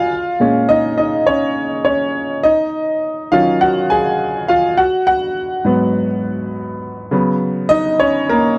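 Swung sixteenths at 103 BPM in 4/4 give this soul fragment, cut from a longer piece, a lush feel as a solo grand piano moves through A#m7, D#m7 and G#m7 before reaching C#9sus4 at 7.1 seconds. The piano sounds clear, worn and natural, placed up front and spanning G#2 to G#5. A light reverb touches it within a dry, close, 1970s-style studio sound that leaves the whole warm.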